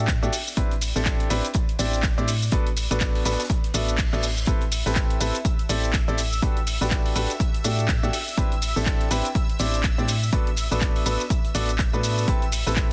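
A clear, intimate baby grand piano carries the riff in this energetic, soulful piano house excerpt at 123 BPM in 4/4, with a 16th-note swing of 59%. The piano's action noise is audible, and its long sustain is touched by tape echo and sidechain pumping. Beneath it, a round, dark FM bass with a fast attack pumps in time. A punchy electronic kick sits up front with a tape-warm tone, joined by an analog drum machine playing handclaps, hi-hat and shaker, while a very quiet acoustic fusion kit adds hi-hat and a high-tuned snare in a pumping small room. A reverse cymbal rises in the background at 3.7 seconds, leading into a silky, detuned sawtooth string pad that enters at 4.7 seconds with ensemble chorus, phaser and its own pumping. The harmony cycles through Cmaj9/A, Bm7/A, Am9 and Gmaj9/A, and the whole is delivered as a dense, heavily limited modern master with small room ambience.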